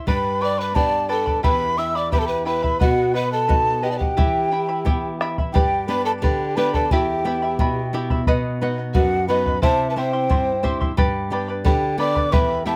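A close, detailed recording with light reverb captures this Andean folk ensemble in a short excerpt cut from a longer piece, moving at 88 BPM in 2/4 with a straight feel in E minor. The mood is melancholic yet festive. A large wooden quena carries the melody, breathy and expressive with vibrato, a crisp chiffing attack and a slapback echo, while a hollow bamboo pan flute plays a mellow second line beneath it. The charango opens the recording alone at 0.0 s with shimmering double strings, joined at 0.1 s by a fingerpicked flamenco guitar in the low register and a round, vintage bombo set up front. The phrase is stated twice, with the harmony turning through G, Em and B before a C chord arrives at 9.6 s and the progression settles on G.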